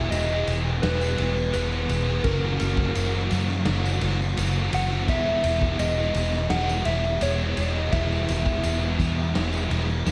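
A round, dark, foam-muted electric bass sits up front in this hazy, wistful slice of shoegaze and dream pop, anchoring a straight 4/4 groove at 84 BPM in E lydian. Above it, a soft, keys-like FM synth lead carries the melody with a gentle, warbling vintage tone, its fast attack decaying into chorus and delay. Three overdriven guitars stack their riffs: a biting one trailed by reverse reverb, a crunchy part bathed in lush chorus, and a bright, double-tracked crunchy part with ensemble chorus set further back. A raw garage drum kit enters at 0.1 seconds, its punchy kick, medium-tuned snare and ride cymbal heard in the background with a smooth, rolled-off top, joined by a jingly, band-limited tambourine. The chords move from Emaj7 to F#7 at 2.2 seconds and settle on E at 5.1 seconds, all within a dreamy mix soaked in plate reverb, cut from a longer piece.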